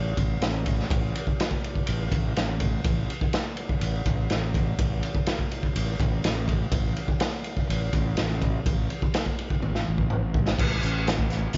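Lightly reverberant and dulled at the top, this short cut of hypnotic, trippy psychedelic rock opens on a round, overdriven fuzz bass, joined at 0.2 seconds by a gritty, up-front garage drum kit in a small, pumping room, whose boomy kick, medium-tuned snare, hi-hat, ride, crash and toms play a fill from 9.6 to 10.6 seconds.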